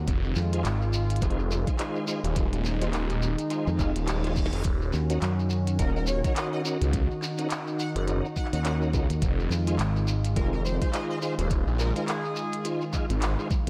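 A swung 105 BPM glitch hop groove in 4/4 rides on an overdriven, knocking electronic kick and a glitchy kit of tiny snare, clicky hi-hats and handclaps, with a grainy shekere underneath, in this gritty, swaggering excerpt cut from a longer piece. A round, punchy fingered electric bass and a thick, swirling phased saw bass sit up front over Fm7 and Ebm7 chords, while a mellow, sidechain-pumped analog pad and smooth tonewheel organ stabs with fast rotary speaker, chorus vibrato and analog delay fill the background. A reverse cymbal at 3.8 s and a drum fill lead into the Ebm7 change at 4.7 s, and a bright, tearing sync lead melody with lush chorus and delay follows from 5.8 s to 12.6 s, while the mix sits in light digital ambience.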